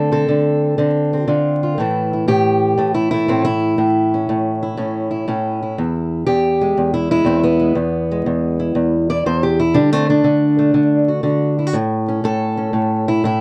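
A dark, vinyl-crackled production with moderate studio reverb frames this short, soulful and rollicking acoustic country blues cut from a longer piece, moving at 120 BPM in 4/4 with a swung eighth-note feel. A lone fingerpicked, ladder-braced acoustic guitar sits up front, its woody, boxy tone and old strings ranging from E2 to D5. The harmony moves from Dm7 through A, E and D before returning to A near 11.7 seconds.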